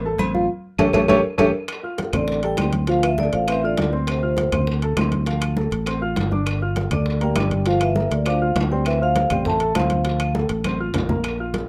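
Afro-Cuban jazz at a fiery, driving 201 BPM in D minor, this excerpt opens with a dark, lightly vibrato bassoon solo over a growly, up-front fingered electric bass and a mellow concert grand piano, with a band accent and drum fill before the chords move from A7 to Dm7 at 1.7 seconds. A metallic, motor-off vibraphone carries the melody from 2.2 seconds, with the bassoon as a second line. Ringing congas, close and dry metal-shell timbales with agogo bells, tight high-tuned cowbell and bongos, and distant woody claves keep up a dense percussion bed under a light reverb.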